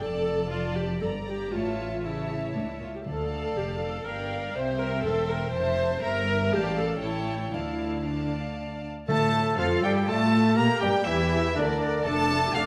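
A stormy, restless classical-period symphonic movement in D minor, moving quickly in 3/4 at 121 BPM, opens with a close, intimate string body: violins carry the melody and a second line with vibrato and a soft sul tasto tone, an up-front viola section fills in the accompaniment, and a dark, woody cello section and a pure, floating double bass section anchor the bass. Round, soft-mallet timpani sit in the background on D, sounding briefly at 3.1 seconds and again from 7.5 seconds. At 9.1 seconds the winds join, with an airy, hollow flute section, a mellow clarinet, a smooth-topped oboe and a bassoon adding lines and accompaniment over quiet sustained French horn chords, all in a reverberant recital hall with a layer of vinyl crackle.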